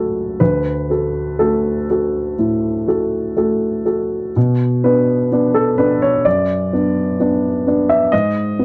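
A lone upright piano opens this brief fragment of neoclassical minimalist music, its woody tone sitting up front in a dry, close studio sound with a 1970s character and only a light touch of reverb. The mood is melancholic and wistful, unfolding at a slow, unhurried pace in 4/4 with a flexible, rubato feel. The piano ranges from C#2 in the bass up to E5, settling first on a D chord before moving to B minor at 4.4 seconds, where the opening phrase begins again. Near the close, a bare G#5 chord at 8.1 seconds leaves the music suspended, as if the passage continues beyond the cut at 8.6 seconds.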